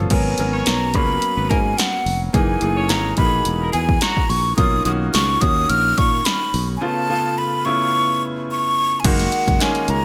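The breathy, close-miked silver concert flute leads this polished 1980s jazz-funk pop excerpt, its mellow straight tone sitting up front with tongued, slightly unsteady phrasing high in its register. Beneath it, a punchy analog drum machine with tape-warm kick and snare, hi-hat and crash cymbal drives the urban, upbeat groove at 108 BPM in 4/4, swung lightly on the sixteenths and bathed in gated reverb. A sustaining fretless electric bass with a growly, amped tone and analog chorus anchors the low end, while a brilliant concert grand piano with subtle chorus and deep bass fills in the accompaniment. A tight, vintage horn section with light vibrato plays a jazz-style second line in the background from 0.5 to 4.2 seconds. The harmony in F# major moves through rich extended chords, with a break from 6.8 seconds over an altered dominant before resolving to F#69 as a new section begins at 9.0 seconds, all framed by lush hall reverb and bright digital-era production.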